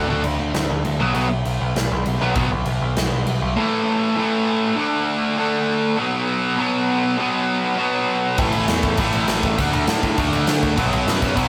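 Punk rock at 199 BPM in 4/4, energetic and rebellious, cut from a longer piece and captured as a rough rehearsal-room recording with light reverb. An up-front, double-tracked, bright overdriven guitar riff cycles through D5, B5 and A5 chords across the whole 11.5 seconds, joined in a half-time opening by a growling picked bass and a big, airy, polished rock kit with punchy kick, medium-tuned snare and crash cymbal. The drums and bass fall away by 3.6 seconds, leaving the guitar alone until both return at 8.4 seconds.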